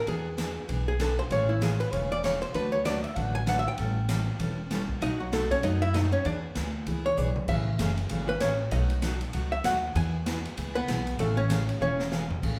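A miked, amplified archtop guitar opens at once with a dark, clean, compressed hollow-body solo, out front over a cheerful, down-home western swing groove in 4/4, cut from a longer piece. Picked steel-string acoustic guitar adds a bright, full-bodied jumbo accompaniment, while the upright bass plays woody, thumpy gut-string pizzicato up front. A swinging big-band drum kit with dark cymbals and a punchy kick rounds it out, adding fills at 7.2 and 11.8 seconds, with the whole band playing live in one room under a lush, roomy studio reverb.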